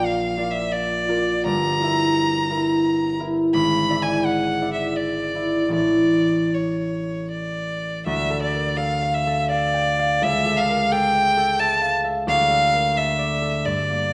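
A single bowed violin sits up front and carries the melody, its clear, smooth tone marked by vibrato and an even line that stays between C#5 and B5. Beside it, a concert harp supplies the accompaniment from G1 up to G5, its thumb-plucked strings bright and ringing, also placed up front in the mix. This classical romantic duo moves in 3/4 at roughly 75-89 BPM with a rubato feel, and the mood in D minor is elegiac and solemn. The harmony drifts through Bb, diminished and dominant colours toward A, then a second passage from 8.1 seconds settles between Dm and A7/C# before returning to Dm at 12.3 seconds. A moderate recital hall reverb surrounds both instruments, while vinyl crackle and a rolled-off top end give the sound an aged patina. Both parts play throughout this short cut from a longer piece, which runs 14.1 seconds.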